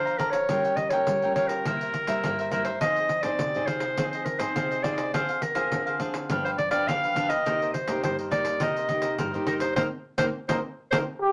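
A clear, close-miked clarinet sings a yearning, nostalgic melody in C minor over crisp picked cavaquinho, full-bodied fingerpicked nylon-string guitar and jingly, dry pandeiro in this 104 BPM samba and choro excerpt, moving through a Gm7b5, C7, Fm7, Dm7b5, G7 and Cm7 progression inside a small, reverberant room before a band accent at 9.8 seconds and a brief breathy, whispered trombone note at 11.2 seconds.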